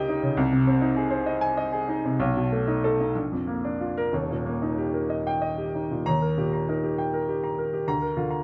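Heroic and brilliant, this short fragment of a classical virtuoso piano study in Eb major moves in a rubato 6/8 at about 61-69 BPM in dotted quarters, tuned to A4 = 444 Hz. A lone baby grand piano, warm, open and up front, spans Eb1 to Bb5 and passes through Ab/C, B7 and Bb before settling on Eb at 4.1 s. Its opening idea returns at 6.0 s and ends on Bb/D, all set in a moderate studio reverb.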